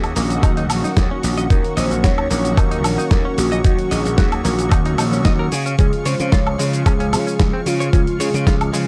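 A straight 4/4 groove at 112 BPM drives this sensual, cosmic nu-disco excerpt in Eb minor, built on a thumpy, overdriven, up-front electronic kick and a dusty sampler-style soul kit of cabasa, hi-hat, medium-tuned snare and woodblock, with a growly, punchy slap bass under a twangy, clean picked electric guitar riff from 0.2 s, a round, detuned synth brass and a lush, thick unison pad pumping with sidechain in the background, and a soft, dark, octave-layered synth lead carrying the melody with chorus, tremolo and analog delay, all moving from Ebm7 to Dbmaj7 at 5.5 s in a dry, gritty hardware sound.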